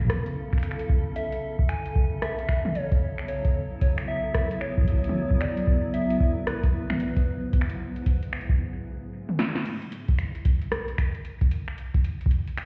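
IDM excerpt at 113 BPM with a cerebral, glitchy mood and swung 16ths, where a cloudy, detuned granular pad holds Aadd9 then Eadd9/G# chords with sidechain pumping until 8.6 seconds, a round, warbling FM lead with chorus, tremolo and tape echo carries the melody from 1.2 seconds, a deep, up-front electronic kick anchors the groove, and an analog drum machine adds a punchy snare, metallic hats, rim clicks, snaps, toms and crash through dub echo, with a break and drum fill leading into a chordless closing section at 9.7 seconds, all heard muffled as if through a wall in a stone room.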